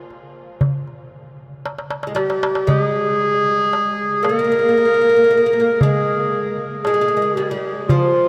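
A crisp metal-shell darbuka opens this hypnotic, soulful Turkish makam excerpt at 116 BPM in 10/8, with a drum fill at 1.7 seconds leading to a woody, plectrum-plucked fretless oud at 2.1 seconds and a classical-style solo clarinet at 2.2 seconds, its warm, up-front melody carrying analog delay, all bathed in a huge, dreamy ambient reverb that lingers for 7.5 seconds.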